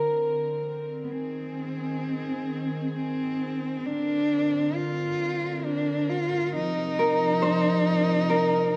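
Longing and mournful, this rubato Celtic slow air in 3/4 moves at 62-68 BPM, with a mellow, ringing, fingerpicked Celtic harp sounding from 0.0 to 1.8 seconds and returning at 7.0 seconds over a soft-attacked, sul tasto symphonic string section holding pure, floating chords, while a single dark cello enters close at 1.0 seconds with expressive vibrato and portamento, the whole dark, warm mix set in a wet scoring-stage reverb as a fragment cut from a longer piece.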